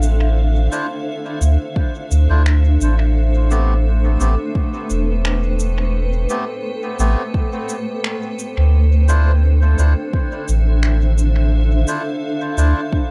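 Ambient dub at 86 BPM with a gentle sixteenth-note swing, deep and meditative, moving between Dm9 and Am9 in this short cut from a longer piece. A soft, round sub bass sits up front with tube saturation beneath a blurred, evolving granular cloud pad drenched in its own reverb. Overdriven electronic cabasa and finger snaps, re-recorded in a small room and thrown into dub echo, play alongside them from the start. Reedy, breathy melodica stabs join at 0.7 seconds with their own echo, and a tape-warm, layered kick enters up front at 1.8 seconds, all within an echo-heavy digital ambience.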